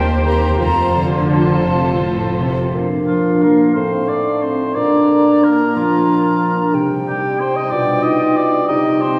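A lilting 3/4 waltz pulse, stretched and eased with rubato at 159-198 BPM, carries this festive, sweeping orchestral ballroom piece in Bb major, tuned to A4 = 443 Hz and cut from a longer work. Muted violins open with the melody, supported by a second violin line, violas, cellos and double basses, all con sordino, dark and veiled with vibrato, and this string body drops out of the texture by about 2.7 seconds. A bright, airy silver flute, a mellow French horn section holding sustained chords, and a concert harp with ringing, fingerpicked arpeggios run throughout. A very quiet clarinet, a warm, roomy oboe and a distant bassoon enter within the first 0.3 seconds and carry on to the end. From 2.7 seconds the harmony settles on Bb, then moves through F7/A and back to Bb before turning toward C minor via G7/B. A wet concert-hall reverb places the orchestra further back in the room.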